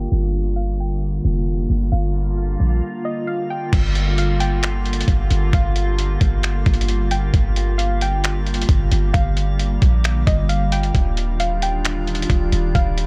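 Atmospheric cloud-rap hip hop in a half-time 4/4 feel, this melancholic, hazy excerpt is cut from a longer piece and opens under a filter sweep. From the start a soft, round pluck carries the melody high up with chorus, delay and a low-pass filter, while a glassy FM pad holds ethereal sustained chords that pump against the beat, thickened by ensemble chorus and reverb. A deep, boomy 808-style bass sits up front with a mellow, decaying tone, and a calm texture of drifting glass harmonics hovers quietly in the background. After a brief break at 2.8 seconds, a gritty, pitched-down sampler-style trip hop kit enters at 3.7 seconds with a thumpy kick, hi-hat, finger snaps and crash cymbal, sounding compressed and tape-warm. The harmony rests on Gm7 before moving to Ebmaj9 at 10.9 seconds, all in a dry, filtered mix.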